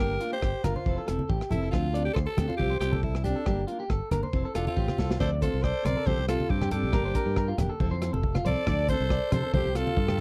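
A dry, close recording in a small room with a 1970s studio feel frames this short cut from a danceable highlife guitar band piece in D minor, moving at 138 BPM in 4/4 with a light swing on the sixteenths. Up front, a raspy, edgy alto saxophone carries the melody with vibrato, while a fingerpicked steel-string acoustic guitar with a dark, full body supplies the accompaniment. An electric guitar at the edge of break-up plays compressed, picked arpeggios through a slapback echo, and a bright, punchy fingered electric bass anchors the low end. A crunchy breakbeat kit with a saturated, gritty tone, punchy kick and rolled-off top drives the groove, joined by thin-skinned, low-tuned congas in the background. A warm, jazz-style trumpet enters at 4.6 seconds with a quiet second line, just before a drum fill at 5.0 seconds leads into the next section over the cycling Gm, Fmaj7, Dm7 and Csus4 chords.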